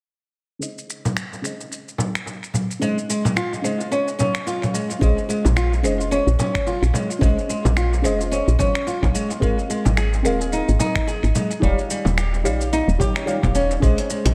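This organic downtempo excerpt opens at 0.6 s with a deep, nasal chord stab, chorused and pumping against a sidechain under tape echo. Alongside it comes a dusty, gritty soul sampler-style kit of finger snaps, hi-hat and shaker, and a small, bright frame drum played with soft hands follows just after. The mood is warm and mystical at 109 BPM in 4/4, with a light swing on the sixteenths. At 2.8 s a fingerpicked flamenco guitar comes up front with arpeggios, its finger squeak audible through a dub echo. From 5.0 s a round, woody FM bass and a thumpy electronic kick anchor the groove, the bass pumping, as the harmony, having opened on Abadd11, moves through Bbm11, Ab69 and Eb9. The whole mix sits in a moderate echo chamber with digital ambience, giving it a heavily echoed, spacious sound.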